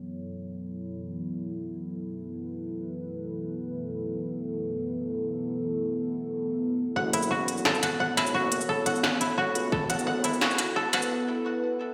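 A deep, moody analog pad, thickened with chorus and phaser and pumping against a sidechain, opens this heavy, cinematic half-time drum and bass fragment with sustained minor chords. At 7.0 seconds the build-up begins as a woody koto, picked with fingerpicks, spins arpeggios through gritty 12-bit sampler texture and delay, while a rumbling detuned saw bass sits in the background; a moment later an industrial kit of crisp hats, shaker, clanging snare and struck metal pushes up front through low-pass filtering. A single heavy electronic kick lands at 9.7 seconds, and the drums drop out for a break at 11.1 seconds, all steeped in a lush hall reverb and the echo of a bare stone room.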